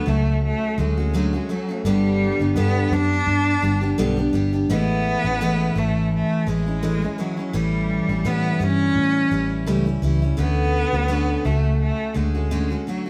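An easy-going, sunny acoustic pop excerpt at 84 BPM in A major, with a light 16th-note swing, played by a small band live in one room with a moderate large-studio reverb. A clear, focused bowed cello carries the melody up front with vibrato, over a bright, full-bodied picked steel-string acoustic guitar and a dark, round, punchy foam-muted electric bass. The harmony moves from Dmaj7 through G and Amaj7 to A7 before returning to Dmaj7 at 10.4 seconds.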